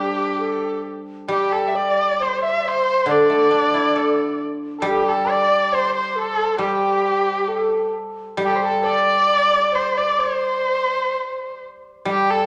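Set in a reverberant recital hall with a 1.4-second decay, this short pastoral passage from a Chinese chamber ensemble unfolds at a gentle, rubato 67 BPM in 4/4, its mood graceful. A single bowed erhu carries the melody up front and close, its warm tone shaped by soft attacks, vibrato and expressive portamento between G4 and E5. A large bamboo dizi plays a second line in the same register, its bright, reedy straight tone buzzing from the membrane with crisp, close-miked attacks until it stops at 11.6 seconds. The hammered dulcimer adds another second line from G4 to D5, its strings shimmering and ringing. Underneath, the guzheng sits up front in the accompaniment, its silvery fingerpicked notes ringing from D3 to A4 through the full 12.5 seconds.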